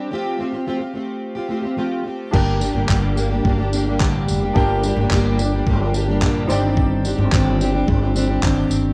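A dry home cassette recording opens this excerpt of reflective, wistful acoustic pop in G minor at 108 BPM, with a full-bodied, double-tracked steel-string acoustic guitar fingerpicked alone over Fadd9. At 2.3 seconds the band enters as the harmony moves to Gm and later Cmadd9/G: a growly pizzicato upright bass sits up front beside a gritty, compressed sampler-style drum kit with a thumpy kick, handclaps, tambourine and crash. A clear upright piano stays in the background.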